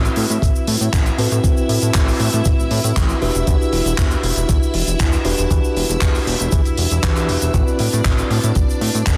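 Nu-disco with a cosmic, sleek mood, cut from a longer piece, where a fat, detuned analog bass sits up front under a bell-like tine electric piano that pumps with sidechain and delay through a filter sweep, lush vintage string-machine chords shimmer with ensemble chorus, and a dry, damped 70s kit with handclaps and hi-hat is joined by a background tube shaker from 0.1 seconds and a gritty, thumpy electronic kick from 0.4 seconds, all moving from Am69 to Em7 and back in a dense, heavily limited master with light reverb.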